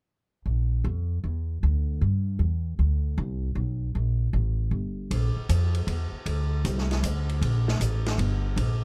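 Upright bass opens this short modal jazz fragment alone at 0.5 seconds, its pizzicato steel strings sounding woody and growly, sitting up front in the low register between G1 and G2. The piece moves at 155 BPM in a swung 3/4, centred in Bb lydian with a slightly low tuning of A4 = 438 Hz, giving it a hypnotic, open mood. At 5.1 seconds a vintage drum kit joins on hi-hat, ride cymbal and snare, recorded naturally in a small room with dark cymbals, a medium-tuned snare and a rolled-off top. The drums sit well beneath the bass in level, so the bass line remains the focus as the music shifts into a new section. The sound is dry, with little reverb, and the passage is cut from a longer performance, ending at 8.8 seconds.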